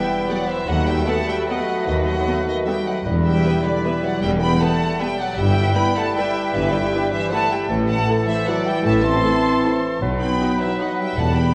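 A sweeping, bittersweet classical passage in 3/4 with elastic rubato opens on a lush, softly bowed violin section singing the melody over a richer, distant second violin line, with a clear oboe, a pure flute ensemble and a mellow clarinet carrying second lines, while a smooth-topped bassoon, close-miked French horn chords and a very quiet viola section fill out the accompaniment. Cello, double bass and a soft tuba join on the bass at 0.7 seconds, and round, gently struck timpani sound briefly at 3.1 seconds and again from 10.0 seconds, all set in a reverberant concert hall and colored by worn, warbling old-tape pitch drift.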